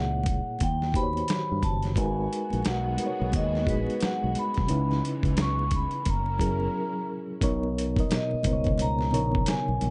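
A dry, ringing vibraphone carries the melody over a reedy electric piano with fast tremolo and a punchy fingered bass, joined within the first second by very quiet, bright congas and an up-front, gritty sampler-style drum kit with overdrive and a thumpy kick. This soulful R&B and neo-soul excerpt moves at 88 BPM in B major with a swung sixteenth-note feel, and a distant bowed string section adds sustained chords with vibrato from 2.0 to 7.4 seconds. After a short break, the music settles onto a Bmaj9 chord, all within a dark, warm production with light reverb.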